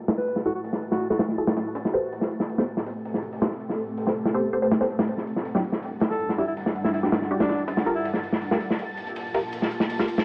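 Dry and gritty, with cassette-tape saturation and a small-room ambience, this excerpt of atmospheric, frenetic jungle-leaning drum and bass runs at 162 BPM in a straight 4/4. An up-front, crunchy breakbeat kit of hi-hat and snare sounds dark and saturated with a rolled-off top, while a very quiet, pitched-up electronic shaker and snare adds compressed, sampler-style detail underneath. An ethereal, airy pad holds slow-attack sustained chords through ensemble chorus, tremolo and 12-bit sampler grit, and a reversed, granular swelling texture sits dreamily in the background. A filtered dub chord stab, resonant and wave-folded with phaser and dub echo, carries a filter sweep across the whole passage as the harmony moves from F#m9 through Am9 and Em9 to Gm9. A bright alto saxophone with vibrato plays short solo phrases at 0.2 seconds and again from 6.1 to 8.1 seconds, its lines colored by sampler grit and trailing dub echo.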